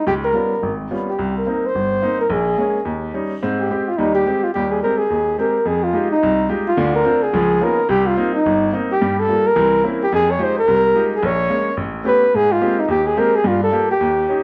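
Warm and relaxed, this jazz cut from a longer piece swings at a brisk 216 BPM in 4/4, beginning in Ab major before turning to F minor at 5.7 s. A breathy, mellow flugelhorn carries the melody from the opening moment, sitting up front as the soloist with light vibrato and scooped notes, moving between Eb4 and Db5. Also up front but softer, a clear baby grand piano accompanies from G1 to G4, its intimate, natural tone ringing with long sustain and audible action noise. The harmony travels through rich extended chords such as Db7#11, Fm9, Db13 and C7b9, reaching Abmaj9 before landing on Gm9. A wet large-studio reverb with a 1.2-second decay and a dark production lend the recording a dusky, spacious glow.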